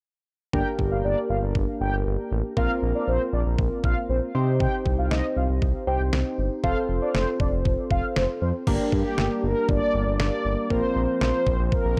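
Driving and cool, this synth-pop excerpt moves at 118 BPM in G minor, with a detuned 8-bit drum machine giving a thumpy kick, fat snare and crash cymbal up front, while a smooth sawtooth bass with vibrato holds the low end. Round, chorused analog keys carry the accompaniment under a filter sweep, and a dark, brassy synth brass with analog delay plays a second line until 8.5 s. At 8.7 s a vintage, warbling pad settles in the background, and at 8.9 s a second synth brass takes up the melody, all within a dry, gritty hardware recording with a digital ambience.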